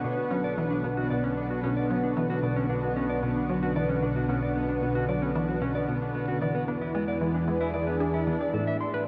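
Ambient, sequencer-driven space music in B minor at 113 BPM, this expansive, cosmic excerpt cut from a longer piece moves from Bmadd9 to E7 at 6.4 seconds and Amadd9 at 8.5 seconds. A thick, bright unison pad with chorus sits up front over sustained chords, while a dark, clean electric guitar plays fingered arpeggios through tape echo and shimmer reverb, and a squelchy, detuned blip pluck plays a riff. An evolving analog drone with pulse-width modulation carries the bass from 0.6 seconds, a very quiet pulsing gated texture appears at 8.5 seconds, and the whole mix is bathed in huge reverb with the warble, pitch drift and faint mains hum of worn cassette tape.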